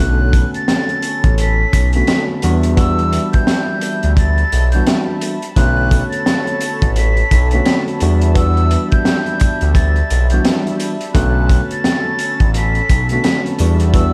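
A swung boom-bap groove at 86 BPM in 4/4 drives this gritty, tough hip-hop excerpt in B minor, with a crunchy breakbeat kit entering at 0.3 seconds: a tight kick, high-tuned snare and hi-hat, dark and saturated with a rolled-off top, sitting up front in a studio room. Sleigh bells jingle faintly in the background from the same moment, close and dry. Underneath, a smooth synth bass blending sawtooth and square waves anchors the low end with a fast attack, held notes and a moving notch. A worn, slightly out-of-tune tine electric piano plays mellow accompaniment, while an analog pad with a gentle onset adds evolving, nasal sustained chords given shimmer by chorus. Over the top, a breathy concert flute carries the melody high in its register with a straight tone and soft attack, close-miked yet trailed by a diffuse ambient delay, as the harmony rocks between Bm9 and Em7 under a light studio reverb.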